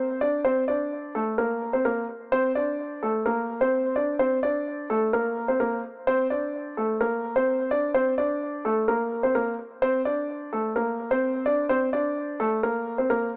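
Heard through a small-speaker sound with light reverb, small room ambience and an echo-heavy mix, this melancholic, hard-hitting hip hop excerpt moves at 128 BPM in 4/4 with a half-time feel, tuned to A4 = 438 Hz. A lone grand piano sits up front for the full 13.3 seconds, its worn, intimate tone softened by a low-pass filter and trailed by dub echo, with audible action noise, ranging from A3 to D5 over an Amadd11 chord. The passage shifts into a new section at 7.9 seconds.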